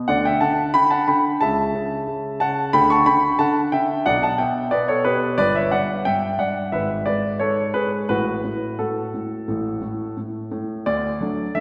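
A polished, up-front grand piano opens this elegant, playful classical-period sonatina in D major, moving at a straight 89 BPM in 4/4 and tuned to A4 = 441 Hz. Spanning G1 to C#6, the solo piano carries a progression from D through A/C#, Bm, Em/G and G#dim to F#m/A before settling back on D at 10.9 seconds. Its present, warm tone sits in a wet, church-like hall reverb, and the passage is cut from a longer piece, ending at 11.6 seconds.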